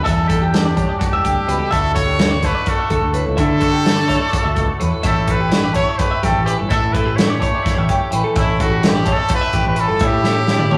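Wistful and playful, this math rock and midwest emo excerpt in 7/8 sets a forceful, scooped, vibrato-laden trumpet melody up front over clean, twangy electric guitar and bright twelve-string arpeggios, both treated with spring reverb, while a direct, fingered electric bass and a punchy studio drum kit move through Em7, Dmaj9 and A9 in a rough, saturated stone-room sound, closing with a drum fill at 10.2 seconds.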